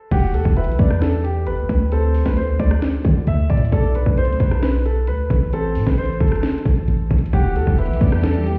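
A half-time trap groove at 133 BPM in 4/4 drives this brooding, eerie hip hop excerpt in E minor. The electronic drum kit sits up front, with a hard-clipped kick, sharp snare, metallic hi-hats, rim clicks and crash cymbal, while a deep, boomy 808-style bass with a sine body, noise layer and fast, decaying attack matches it in weight. A concert grand piano carries the melody with a delay, and a soft, warbling synth lead with a sub octave, chorus, vibrato and delay traces a darker second line in the background. A bowed studio string section arrives at 7.3 seconds with smooth, vibrato-tinged sustained chords as the harmony moves from E5 through D5, Bm7 and Am to Em. The whole mix sounds muffled, as if heard through a wall, and is bathed in stone-room reverb, which deepens its unsettled, shadowy atmosphere.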